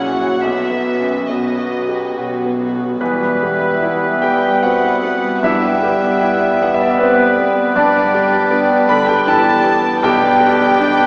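A rubato 3/4 pulse at 67-80 BPM carries this tragic, brooding classical piece in E minor, where an up-front concert grand piano with deep bass and long sustain leads the melody alongside a very quiet violin section, while a second violin section, a dark, hushed viola section, a pure, floating cello section and a soft double bass section play sul tasto beneath, and from 3.0 s a clear solo oboe, an airy, distant flute ensemble, a faint, roomy clarinet, a background bassoon and a mellow French horn section join, set within a long church reverb and a small-speaker sound.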